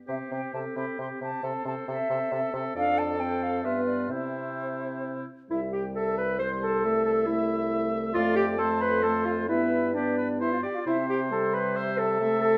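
All five winds of a quintet enter together at 0.1 s, with an airy, expressive concert flute carrying the melody over an oboe second line, clarinet and mellow French horn accompaniment, and a bassoon bass, in a quick, graceful and cheerful classical-period movement in triple time with a flexible, rubato feel. The flute sings with vibrato while the oboe, horn and bassoon add a light vibrato, and the clarinet plays a little louder than the others. The phrase is stated and then begins again at 5.5 s, heard in a dark, roomy large-studio reverb, a passage cut from a longer piece.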